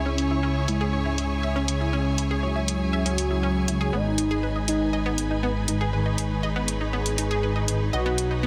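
Melodic techno at 120 BPM in C# minor, this hypnotic, melancholic passage cut from a longer piece moves from C#m to G#m and then B. A deep, rumbling detuned saw bass sits up front, while a fat analog lead carries the melody with vibrato, portamento, chorus and tape echo, its filter sweeping across the full 8.5 seconds. A round analog pluck spins arpeggios through chorus and digital delay under its own filter sweep, and nasal, brassy analog synth stabs add bold weight in the lower register. Two bowed string sections fill out the harmony: a clear studio ensemble holds sustained chords in the background, roughened by vintage 12-bit sampler grit and a low-pass filter, and an expressive symphonic section with a soft attack adds lush texture. Layered electronic hi-hats enter at 0.2 seconds and stop at 8.3 seconds, re-recorded in a large room and low-pass filtered, all set in light reverb and digital ambience.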